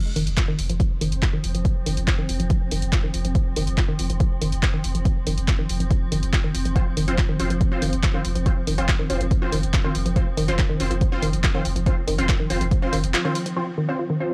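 A straight, driving 4/4 pulse at 141 BPM anchors this relentless peak-time techno cut, with a punchy, up-front electronic kick and a tape-tinged analog drum machine of handclaps and low-pass-filtered hi-hats beneath a deep, round, overdriven sub bass holding F1, a woody, dark wave-folded pluck riff with chorus and analog delay, and a swarming, tense granular drone, while an aggressive, bright detuned rave stab with phaser, chorus and delay enters at 6.8 seconds, a filter sweep runs through the synth arpeggio sound throughout, the band hits an accent at 13.1 seconds, and sidechain pumping breathes through the drone, pluck, bass and stabs on a dry, gritty cassette-tape recording.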